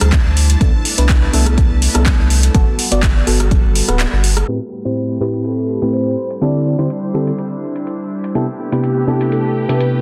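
A swung 4/4 deep house groove opens this moody, smooth excerpt, with an overdriven electronic kick and a deep house kit of handclaps, metallic hi-hats and rim clicks, both re-recorded in a large room and the kit's hats muffled by a low-pass filter. A round sine sub bass, saturated and up front, sits under the kick until it stops at 4.4 s, while the kick itself drops out just before the second section. An airy, breathy pad holds sustained chords throughout, pumping against the sidechain, and a shimmering vintage string machine of violins glows in the background, dropping out at 4.5 s and returning at 8.4 s. A mellow FM electric piano plays dark, decaying stabs through chorus, phaser and tape echo, moving through extended chords such as D9sus4, Cmaj13 and Am9. From 5.2 s a velvety, wave-folded synth lead with vibrato carries the melody over a filter sweep, all under a dense, heavily limited master with light reverb.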